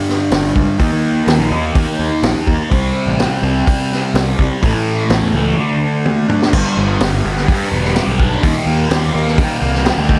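A small-room ambience frames this hazy, kaleidoscopic psychedelic rock cut from a longer piece, where a bright, double-tracked fuzz guitar riff with phaser sits up front over a vintage acoustic kit with dark cymbals, a high-tuned snare and a punchy kick, joined at 0.3 seconds by a round, overdriven picked bass, before a drum fill at 6.1 seconds leads into a new section at 6.5 seconds.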